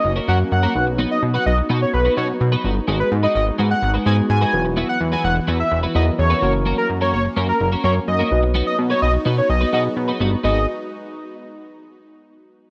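A bold, retro octave-doubled lead carries the melody up front, its detuned sawtooth and triangle tones edged with ring modulation, a sub octave, vibrato, chorus and a slapback echo. This confident, driving pop passage in G# minor moves at 127 BPM in a straight 4/4, cut from a longer piece and built as a drop that runs to 10.4 seconds. Underneath, a glossy, evolving synth bass sits loud and forward, mixing pulse-wave, pulse-width-modulated and sawtooth tones with a plucky filter and chorus. A clean, compressed twelve-string electric guitar picks a riff through analog chorus, while a bright tine electric piano, sounding through a combo amp with phaser, joins at 0.3 seconds in the background. An airy, breathy pad with a nasal, detuned noise layer holds soft sustained chords behind them, as the harmony cycles through F#, B, G#m7 and Esus2 under light reverb.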